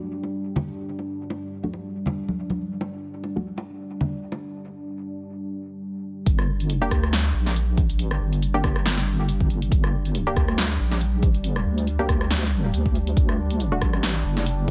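A half-time groove with swung sixteenths gives this cavernous, dark deep dubstep excerpt its slow, heavy gait. It opens on a moody sawtooth pad, detuned and padded with a sub octave, holding sustained chords under its own reverb and a moving notch. Muted, evolving dub chord stabs with a filter pluck and echo sit above it, while bright, close and dry bongos and congas play up front until they fall away before the break at 4.5 seconds. At the drop at 6.3 seconds, a wobbling square-and-sine bass arrives compressed and up front, joined by a deep electronic kick and a house kit of hi-hat, rim click and punchy snare that has been re-recorded in a small room. The stabs return shortly after, and the harmony moves from D to G minor and back to D near the end, all under light reverb.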